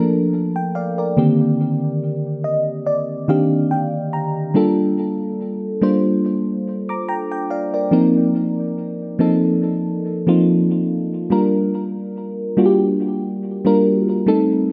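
Light reverb and a digital ambience frame this moody, late-night R&B fragment in G minor, which moves at 71 BPM with a gentle sixteenth-note swing. A lone FM electric piano carries everything from 0.0 to 14.7 seconds, its round, dark tone sitting up front with a fast attack, a noise layer and a coat of chorus, phaser and delay. It plays a fill from 2.0 seconds, then settles into a new passage at 4.6 seconds, drifting through Gm9, F7sus4 and Bb6 harmony.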